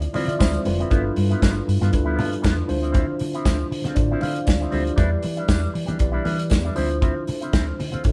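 An up-front soul drum kit, with a tight kick and a rolled-off top, drives this danceable disco excerpt, joined by a dark, round hollow-body fingered bass and a mellow tine electric piano that plays fills at 0.0 and 4.0 seconds. A bright, twangy guitar with an envelope filter adds clean, picked accompaniment, very quiet congas played with soft hands fill out the percussion, and a jingly tambourine sits in the background. The band plays live together in a moderate stone room, moving through Dm9, G13 and Em7 chords.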